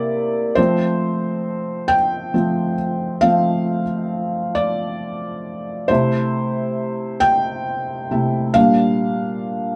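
Heartfelt and tender, this short pop passage in a straight 6/8 is carried entirely by a felt-muted upright piano playing solo from 0.0 to 9.8 seconds. The piano sounds soft, mellow and intimate, placed up front with a natural quality and audible action noise that brings the listener close to the instrument. Its range stretches from Bb2 up to G5, and the harmony moves from C7 to F, later shifting to C6 at 5.9 seconds and Bb6 at 8.6 seconds. A moderate studio reverb gives the sound a gentle sense of room, and the performance has the feel of musicians playing live together in one space. The passage is cut from a longer piece.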